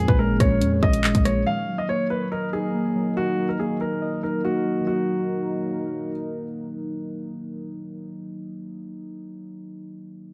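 Lightly reverberant and dark, this tense half-time drill excerpt at 141 BPM in Eb minor briefly features an up-front, tape-warm electronic kit of hard-clipped kick, bright hi-hats, handclaps and rim clicks over a punchy, heavy sine 808 bass, both gone by 1.5 s as the harmony moves from Bbm7 to Ebm, leaving a mellow, long-sustaining baby grand melody with digital delay until 6.1 s, soft, intimate felt-like synth keys with chorus, and a deep, detuned sawtooth analog pad whose slow-attack chords hold underneath.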